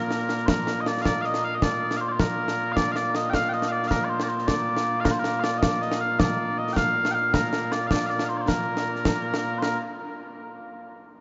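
Bathed in a cathedral's long, echoing reverb with a softened top end, this excerpt of Scottish traditional pipe music in 6/8 feels stirring and ceremonial. Mellow small bagpipes carry the melody from 0.0 seconds, sweet and continuous with vibrato, ranging from Bb2 to G5 up front. Concert snare and bass drums join at 0.1 seconds, close, dry and acoustic, with dark cymbals.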